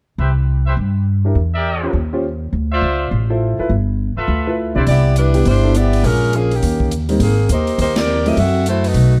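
Big band swing jazz at a brisk 206 BPM in 4/4, this brassy, swinging fragment from a longer piece opens with a clear trumpet section playing soft-attacked stabs with light vibrato and a vintage tone until 4.8 seconds. Underneath, a woody, thumpy pizzicato upright bass sits up front through the whole passage, joined at 1.2 seconds by an intimate grand piano whose audible action noise adds a natural touch to its accompaniment. At 4.9 seconds a dark, tight saxophone section takes up the melody with light vibrato, while a polished, airy drum kit with a punchy kick, medium-tuned snare, hi-hat and ride cymbal enters to drive the swing. The harmony moves through rich extended chords such as Cmaj7, Eb13, G13 and Abmaj9, and the band hits an accent at 7.9 seconds. The production is dark and dry, with little reverb.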